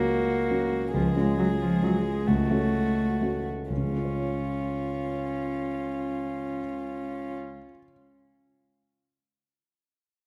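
In a straight 6/8 at 80-92 BPM counted in dotted quarters, this spirited, cheerful passage from a quick classical-period movement for piano trio in Db major slows down between 0.3 and 3.7 seconds, as a single intimate, sul tasto violin with light vibrato and an airy bow carries the melody over a pure, floating cello second line and a dark, mellow concert grand with deep bass and short sustain, set in a wet scoring-stage reverb, with the piano sounding alone briefly after the strings stop at 7.3 seconds.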